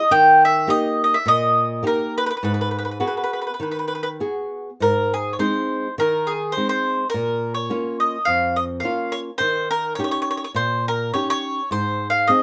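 Italian folk with a wistful, romantic air, moving at 104 BPM in 4/4 with a light swing and rubato give, in G# minor before turning to Ab major at 4.8 s. A woody, double-strung mandolin carries the melody up front, picked from Ab4 to G5, while a bright fingerpicked flamenco guitar accompanies just beneath it from F2 to G#4, with audible finger squeak. Moderate studio reverb gives the pair a close, intimate room, and the chords pass from D# and G#m7 through Ab, Bbm and Eb7 before settling on Ab at 11.7 s in this short cut from a longer piece.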